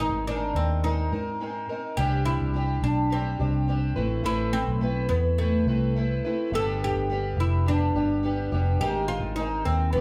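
A straight 4/4 pulse at 106 BPM carries this easy-going, carefree acoustic pop excerpt, tuned to A4 = 445 Hz and cut from a longer piece, as chords move from Abadd9 through Cadd9, Amadd9 and G before returning to Abadd9. A bright, woody oud plucked with a plectrum carries the melody over a fingerpicked twelve-string acoustic guitar with a boxy, shimmering, octave-doubled archtop tone. Underneath sits a vintage fingered electric bass, foam-muted, dark, round and punchy. The three parts play throughout and are all up front, in a wet studio reverb heard from further back in the room.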